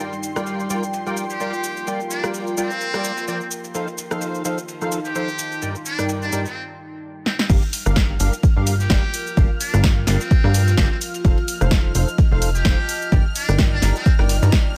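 A buzzy, distant muted trumpet with light vibrato carries a jazz-style solo from 1.3 seconds in this energetic, bittersweet piano house excerpt, set over hollow, percussive organ stabs with a cassette-tape tint, a silky string pad in the background and a deep, moody ambient pad, all pumping against the beat. A punchy, overdriven analog drum machine drives the swung groove with crash, hi-hat, rim click, shaker and snare, while a gritty, very quiet breakbeat kit adds hi-hat, ride and snare underneath. After a short break and a drum fill, the drop at 7.5 seconds brings in an up-front overdriven electronic kick and a funky, plucky analog bass.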